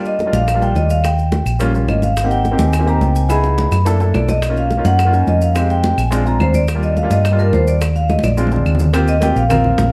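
Afro-Cuban jazz at a quick 213 BPM in 4/4 with a straight feel, this lively, sunny fragment in Eb major moves through rich changes from Ebmaj7 to a closing Eb6. A metallic, ringing vibraphone played with medium mallets and the motor off carries the melody, its boxy small-room tone lifted by a slapback echo, while an upright piano with a woody, short-sustain sound supplies the accompaniment beneath it. A dark, round, punchy hollow-body electric bass sits up front from 0.3 seconds, giving the bottom end an amped, fingered weight. In the background, high-tuned congas with a thin, bright skin and tight bongos drive the percussion, joined by grainy, mellow maracas and vintage, band-limited claves entering at 0.5 seconds. Drum fills arrive at 3.3 and 8.1 seconds, and the production is dark and warm with light reverb, cut from a longer piece.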